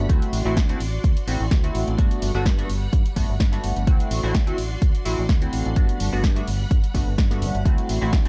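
A funky sawtooth-and-square polysynth comp with chorus, phaser, tape colour and filter sweep opens this feel-good filtered disco house cut at 127 BPM in G major, over lush vintage string-machine chords with slow-attack ensemble chorus and a round, direct fingered electric bass, all three pumping to the sidechain, while from 0.1 s an overdriven, up-front layered kick and a tape-hued analog drum machine with punchy snare and pumping hi-hats drive a lightly swung D7 to Gmaj7 sway in a dark, dry production.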